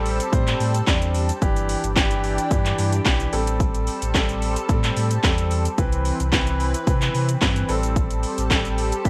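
Set in a digital ambience, this confident, driving dance-pop excerpt in A minor moves at 110 BPM in a straight 4/4. A punchy, up-front house kit with cracking snare, metallic hats, handclaps and shaker drives it over a deep sine sub bass with octave, while a clear, intimate grand piano with audible action noise and a lush, detuned sawtooth pad with chorus and phaser in the background pump to the sidechain. A barely audible downlifter passes from 0.1 to 1.4 seconds as the chords cycle Am7, Em7/G, Am7, Cmaj7 and back to Am7.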